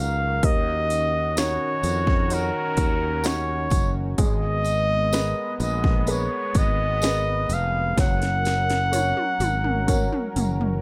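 Heartfelt and tender, this pop ballad excerpt puts a warm, close-miked flugelhorn with light vibrato up front on the melody, over a growly, direct fretless electric bass. A baby grand piano and a detuned sawtooth pad with subtle chorus sit in the background through the D#m7, G#madd9 and F# chords, while a jingly, distant tambourine adds a faint shimmer. An electronic drum kit with a punchy kick, cracking snare and metallic hats enters at 0.4 seconds and plays a fill from 8.0 seconds.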